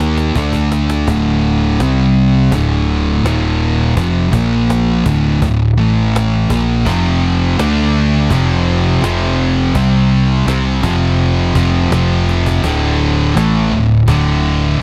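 A straight, unhurried 4/4 pulse drives this hypnotic, ominous stretch of stoner and doom metal, cut from a longer piece. A snappy, close and dry cajon played with hard hands opens with a short fill and adds another at 12.3 seconds, its snares giving the acoustic hits a crisp rattle. Two thick fuzz guitars carry the riff through power chords on D, C, Eb, F, Bb and A: one sits up front with a warm, distorted tone, while the other is darker and tucked into the background. A fingered electric bass, bright, amped and growly, stays prominent beneath them with a touch of overdrive. At 6.9 seconds a double-tracked, high-gain guitar joins in the background with a brighter edge, thickening the wall of sound. The mix is loud, with little reverb, so the heavy tones feel dense and immediate.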